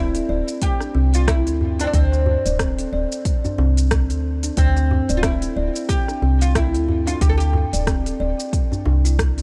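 A swung 16th-note groove at 91 BPM in 4/4 drives this warm, earthy organic downtempo excerpt in D minor, built on an electronic kit of smooth hi-hat, rim click and shaker, a clay-shelled darbuka sitting deep in the background, and a layered, tape-warm electronic kick that enters at 0.6 s. Up front, a soft, round woody FM bass with a fast attack and decaying tone anchors the low end. Above it, a ringing, hollow-boxed kalimba plays thumb-plucked arpeggios and a fretless, double-strung oud carries a plectrum-plucked melody until 8.5 s, both with delay, as the harmony moves from Dsus2 to C/D at 4.6 s inside a dark, small-room production.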